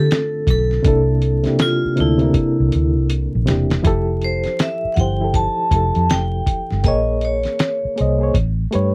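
A hard-mallet vibraphone carries the melody in this short fragment of smooth, sensual neo-soul R&B, its metallic, ringing line marked by a slapback echo and a slow motor vibrato. Underneath, a reedy, worn electric piano plays the accompaniment, slightly out of tune and lightly overdriven, with a fast tremolo, while a foam-muted fingered electric bass adds a dark, round low end. A gritty, sampler-style soul drum kit comes in at 0.1 seconds, with a thumpy kick, a fat snare and hi-hat. The kit plays a fill from 2.3 seconds leading into the second section at 3.8 seconds. At 80 BPM in 4/4 with a sixteenth-note swing, the harmony moves through rich chords in F major, including Dm7, Fmaj9 and Bbm9, before landing on A9. Every part sits up front in a dry, close 1970s-style studio sound, dusted with vinyl crackle.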